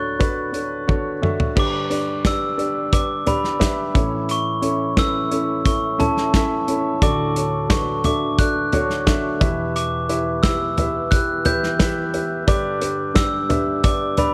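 At a relaxed 88 BPM in a straight 4/4, this uplifting piano-driven pop excerpt opens with a warm concert grand laying down deep-bassed chords up front while a mellow, bell-like glockenspiel struck with rubber mallets carries the melody, close and dry. A loose indie drum kit with dark cymbals and a tight kick slips in at 0.2 seconds, a fill from 0.9 to 1.6 seconds leads into the main passage, where a very quiet brass ensemble adds smooth, lightly vibratoed sustained chords. The progression moves from Dmaj7 through G, A, D and Em back to G, all in a small room with light reverb.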